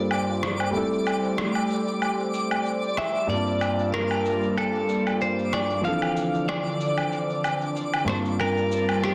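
A dark, intimate grand piano with audible action noise and tape echo opens this smooth, warm sunset chillout excerpt at 94 BPM in G dorian, alongside a lush, detuned unison pad under chorus, phaser and a filter sweep, plus a twinkling granular shimmer; then gritty, sampler-style electronic woodblock, cabasa and rim click enter at 0.1 seconds with a gentle 16th-note swing, and a bright, twangy clean electric guitar carries the melody with lo-fi sampler crunch and delay from 3.0 seconds over Gm11, Am7 and Dm7 chords, all set in a moderate plate reverb and a dense, heavily limited modern master.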